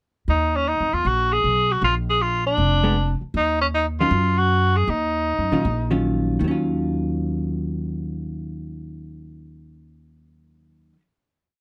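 A swinging 4/4 pulse at 157 BPM drives this short, moody, smoky small-group jazz piece in Eb minor. The upright bass enters at 0.3 seconds with a woody, growly pizzicato two-feel beside a clear tenor saxophone that shapes sentence-like motifs with vibrato. The harmony moves through Eb5, Bb and Ebm9, and a dark, compressed hollow-body electric guitar joins at 2.8 seconds with syncopated three- and four-note comping before a final chord, all captured up close in a dry room.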